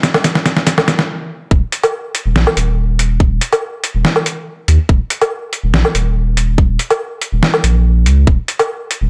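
Lightly reverberant digital ambience frames this brooding, heavy deep dubstep fragment in half-time: a tight, layered, high-pass-filtered electronic kick joins a gritty, compressed, pitched-down trip hop sampler-style kit of hi-hat, medium-tuned snare and woodblock, both overdriven and up front, for a drum fill and a stop at 1.1 seconds before the drop at 1.5 seconds brings in a thick, saturated triangle sub bass that sustains between Eb1 and Eb2.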